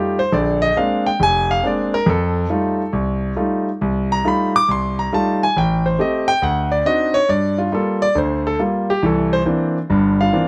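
A clear concert grand piano carries this short solo jazz passage on its own from 0.0 to 10.5 seconds, its deep bass and natural tone sitting up front. The mood is playful and warm, moving at 138 BPM in 4/4 with a swung eighth-note feel rooted in F mixolydian. The harmony opens on Bb9 and F9, then turns through Am7b5 and D7b9 before reaching Gm7 at 7.3 seconds and C9 at 9.0 seconds. The piano spans from the low F1 up to D6, giving the playing a full range from rich low register to upper notes. Close, detailed microphones and little reverb keep the sound intimate and dry, and the passage is cut from a longer piece.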